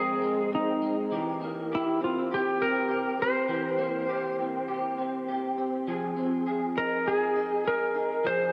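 Indie pop in F minor at 101 BPM, this mellow, lonely passage is cut from a longer piece. A clean, compressed lap steel guitar carries the slide melody between Eb4 and C5, twangy and up front under lush chorus and a diffuse ambient delay, while an electric guitar through a small old amp picks a warm, slightly broken-up accompaniment with ensemble chorus and vibrato over Fm7, C7/E and back to Fm7. Both parts play throughout the 8.5 seconds, bathed in a wet plate reverb that gives the mix its dreamy, soaked atmosphere.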